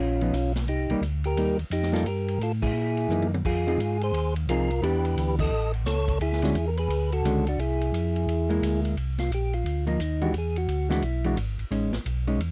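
Late-night and smoky, this brief soul jazz organ trio cut swings, with a percussive tonewheel organ carrying the round, clean melody through a slow rotary speaker. Beneath it, a second tonewheel organ plays a mellow, lightly overdriven bass line with chorus vibrato. A dark, fingered hollow-body jazz guitar comps up front, and a vintage drum kit sits further back with dusky cymbals, a punchy kick and a drum fill at 3.1 seconds. The band hits accents together before the organ takes a solo from 9.0 seconds, all captured in a dry, close 1970s-style studio sound.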